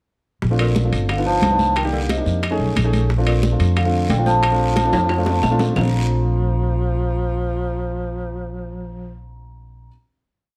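Afro-Cuban jazz, lively and sunny, in which a soft-mallet vibraphone carries a mellow, motif-based melody over a woody pizzicato upright bass tumbao that anticipates the chords, intimate syncopated grand piano stabs in rootless voicings and a breathy subtone tenor saxophone harmony line mostly in thirds, while congas, bongos, ringing timbales, raspy guiro and very quiet claves play until a drum fill at 4.9 seconds leads into the final chord at 5.8 seconds.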